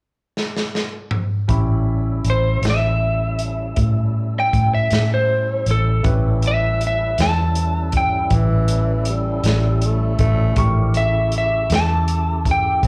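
Slow, rollicking yet laid-back blues in 12/8 at 53 BPM, in A mixolydian, opening with a gritty, saturated breakbeat drum fill before the band settles onto an A7 chord at 1.5 seconds. A dark, round, foam-muted electric bass sits up front, with a fat tonewheel organ holding sustained chords through a slow rotary speaker with key click and chorus vibrato, and a boxy grand piano tucked in the background with slapback echo. Soon after, a slightly broken-up, compressed lead guitar carries the melody with slapback echo, and between 8.3 and 10.8 seconds a breathy, raspy tenor saxophone adds a low, growling second line with scooped notes, all heard as a live club gig through the venue's PA.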